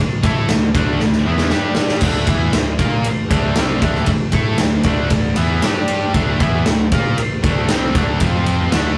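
The excerpt opens on an overdriven electric guitar riff alongside a heavy, double-tracked high-gain guitar sitting in the background, with a third high-gain distorted guitar, a fuzz-drenched fingered bass and a big rock drum kit joining at 0.2 seconds. This is menacing, heavy hard rock in D minor at 117 BPM in a straight 4/4, built on power chords moving between D5, G5 and D minor before touching F5 and returning to D5 near the close. The drums sit up front with a punchy kick, a medium-tuned snare, bright crash and ride cymbals and a big-room natural sound, and they play a fill from 1.0 to 2.0 seconds. The bass growls underneath the guitars, picked riffs layered in the low-to-middle range, while the two high-gain parts thicken the wall from behind the overdriven guitar's bright edge. A moderate reverb and the rough, saturated feel of a rehearsal room give the whole take a raw, crowded density.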